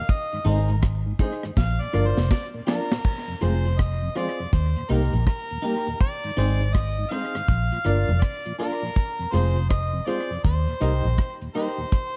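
Roots reggae with a hypnotic, meditative feel and a swung sixteenth lilt, this excerpt opens on a clear, close-miked harmonica solo with tape echo and a drum fill from 1.6 to 3.0 seconds, all riding on a dry, up-front drum kit and a round, foam-muted fingered bass that run beneath the whole excerpt, with a reedy electric piano playing stabs through fast tremolo, a mellow tonewheel organ turning in slow rotary, and a twangy clean guitar with tape echo tucked in the background, set in light reverb and vinyl crackle.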